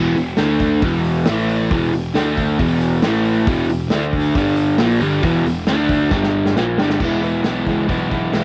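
Cut from a longer piece, this home cassette recording has a moderate, booth-like ambience. It is rowdy, swaggering garage rock in a straight 4/4 at 136 BPM, played by a small band. An up-front, double-tracked crunchy overdriven guitar drives the riff, picking its way through power chords on D, E and A before a turn to G and a Gm7. Underneath, a fuzzed, picked electric bass growls bright and gritty, its amped overdrive adding tube saturation. The vintage acoustic drum kit enters at 0.2 seconds with a punchy kick, a medium-tuned snare, hi-hat and dark crash cymbals, its tape-coloured sound rolled off at the top and pumping in a small room. A drum fill from 6.1 seconds leads into a new section at 7.0 seconds that lands on an E chord.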